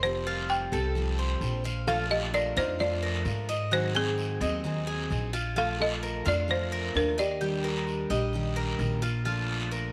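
Set in light studio reverb, this sunny, danceable clip of Cuban son and guajira moves at 130 BPM in Bb major, its chords settling back on Bbmaj7. A rustic folk marimba struck with hard mallets carries the melody with a slapback echo until 8.1 seconds, over a bright, metallic Cuban tres playing arpeggios, a full-bodied steel-string acoustic guitar with audible finger squeak, and a thumpy, up-front upright bass. A raspy guiro sounds distant in a large room, and from 1.9 seconds a dark, thumb-plucked nylon-string guitar adds a quiet second line in the background.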